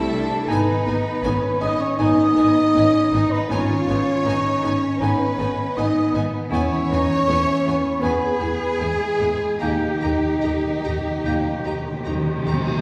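A hopeful, tender cinematic passage opens with most of the orchestra at once: a solo French horn and a lush, vibrato-laden violin section carry the melody, with the horn set back in the mix. Around them, an airy, hollow small flute group and a second, focused violin section add counter-lines. A distant viola section, a roomy French horn section holding sustained chords, and a very quiet, ringing harp playing arpeggios fill out the middle. The bass comes from an expressive cello section with portamento and a soft-attacked double bass section, and shortly after the start a clear, close-miked clarinet and a warm oboe add their own background lines. At a rubato 79 BPM in 4/4 with uneven beats, the harmony moves from Abm to E and settles on Eb, where timpani struck with hard mallets enter at 9.6 seconds for an articulate fill to the close. A wet hall reverb surrounds the ensemble, and the passage is cut from a longer work.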